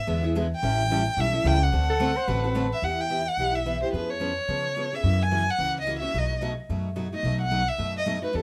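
A swung 4/4 pulse at 218 BPM drives this brief, bittersweet cut from a longer jazz manouche piece, where a close, expressive bowed violin carries the melody with vibrato and portamento over a bright picked steel-string acoustic guitar with audible finger squeak and a woody, thumpy pizzicato upright bass on gut strings, while a mellow, subtoned soprano saxophone adds a smooth second line from 1.9 to 2.8 seconds before the harmony turns from E7 and A7 toward Em and F#7, all in a moderate studio reverb.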